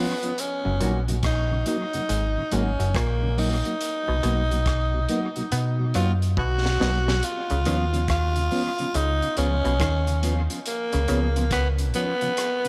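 Warm and uplifting, this roots reggae excerpt sways at 70 BPM with a swung sixteenth feel in Db mixolydian, led by a raspy tenor saxophone with light vibrato and scooped notes, carrying the melody up front through dub echo. Beneath it, a round, punchy fingered electric bass sits forward, while a crunchy, saturated breakbeat kit with a high-tuned snare and tight kick adds echoing grit. In the background, a dark electric guitar shimmers through lush chorus and dub echo, a tonewheel organ with key click turns through a slow rotary speaker, and a muted, stringy clav riff plucks along, with a drum fill at 6.4 seconds leading into a Db7 change at 7.2 seconds under light reverb.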